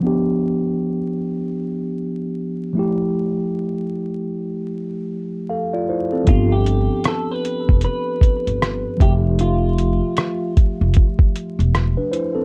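A mellow tine electric piano, heard through its built-in speakers with cassette-tape grain and a filter sweep, opens this dreamy lo-fi hip hop fragment at 77 BPM with a swung 16th feel over G7 and Fmaj9, until at 6.3 seconds a muffled, pitched-down sampler-style drum kit with a thumpy kick, hi-hat and rim click arrives up front alongside a woody, growly pizzicato upright bass and a clean, fingered electric guitar melody softened by lush chorus, analog delay and a low-pass filter that ends at 10.5 seconds, set in a dark production with vinyl crackle and moderate studio ambience.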